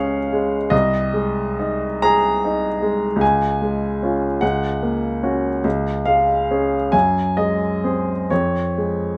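A clear, intimate baby grand piano sits up front in a light reverb, its long sustain and audible action noise giving the sound a natural, close-up presence. This is a short cut from a longer romantic character piece for solo piano in Db major, lyrical and passionate in mood. The tempo is slow, around 42 to 52 beats per minute counted in dotted quarters, in 6/8 with a flexible rubato feel. The piano spans from C2 up to Bb5 across the whole 9.2 seconds. Its harmony moves gently from Db through Ab/C, returns to Db, touches Gb/Db, comes back to Db, and passes through Ab7/Gb before settling on Db/F at 8.3 seconds.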